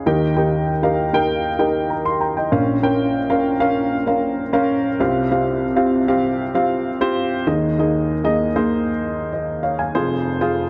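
Bathed in a moderate plate reverb, this short cut from a longer pop piece features a single dark upright piano, woody, slightly detuned and up front with long sustain, playing a dramatic, earnest passage at 97 BPM in a straight 4/4 that moves through Eb, Bbmadd9, Csus4 and Ebsus4 before settling on Fm at 9.9 seconds.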